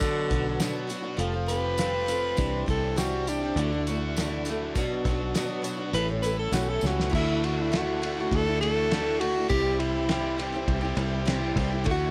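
This home recording on cassette has a close, dry sound with little reverb, and it is cut from a longer piece of folk rock and heartland rock with a warm, nostalgic mood. Up front, a tenor saxophone carries the melody as a solo through the first 7.1 seconds, its subtone coloured by vibrato, scooped notes and a cassette-tape grain. Beneath it, a boxy parlour-style steel-string acoustic guitar is picked in accompaniment, a bright, double-tracked overdriven electric guitar plays a biting riff, and a very quiet tonewheel organ holds clean sustained chords through a slow rotary speaker. A punchy, foam-muted fingered electric bass sits prominently with a cloth-damped, thuddy drum kit that has a fat snare, a tight kick, dark cymbals and its own tape tint. A jingly tambourine stays in the background until 7.0 seconds, a drum fill arrives at 6.8 seconds, and the harmony moves from a Bm-led progression onto Dadd9 and C for the closing stretch.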